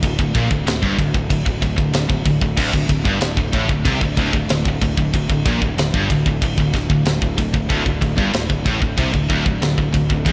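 A tight, up-front metal drum kit with a high-tuned snare, tight kick, crash and ride cymbals drives this relentless, aggressive heavy metal excerpt in straight 4/4, while three bright picked guitars (a crunchy double-tracked overdriven one, a very quiet high-gain one and a background distorted one) grind out low riffs over a round, fuzzy overdriven bass, all set in a lush hall reverb that gives a big arena sound.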